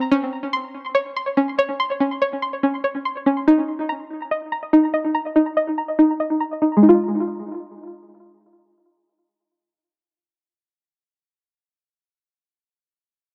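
A twangy, full-bodied string-like resonator pluck carries this melancholic yet hard-hitting hip hop excerpt, playing arpeggios from Ab3 to C6 in F minor at 143 BPM with a half-time feel. Its bright, up-front tone, shaped by chorus and tape echo, runs through a filter sweep over the first 6.8 seconds, moving from an Eb5 chord to Fm7 as the second section begins. A moderate plate reverb and an echo-heavy, low-pass-filtered mix give the piece a hazy, spacious finish.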